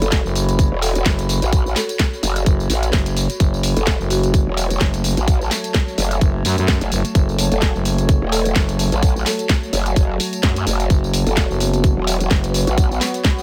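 A faint mains hum sits under this digital, small-room mix, cut from a longer piece of swaggering, aggressive bass house in F# minor at 128 BPM with a 56% swing on the 16ths. Up front, a tight electronic kick drives a garage drum kit of cracking snare, hats and tambourine, while a wobbling, saturated growl bass with chorus and overdrive and a thick FM bass both pump against the kick. In the background, a soft-mallet marimba plays a mellow melody through dub echo from 0.0 and again at 7.5 seconds, a nostalgic, lo-fi tape pad warbles with phaser and reverb, and a nasal, detuned resonant pad with 12-bit sampler grit enters with sustained chords at 3.4 seconds.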